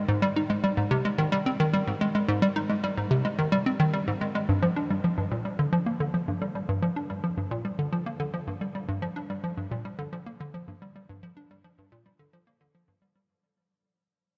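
Mysterious and expansive, this ambient fragment is cut from a longer piece and moves in a steady, straight 4/4. A single hollow square-wave pluck carries the whole recording alone, ranging from G2 up to Eb4. Its sound is bouncy and detuned, with a fast attack, a short decay, a sub octave underneath and a noise layer. Chorus and tape echo thicken the bright, up-front pluck, while a huge, wet reverb with a long tail opens up a vast space around it. After the opening passage gives way to a second one at 4.5 seconds, the music fades out until it ends at 13.3 seconds.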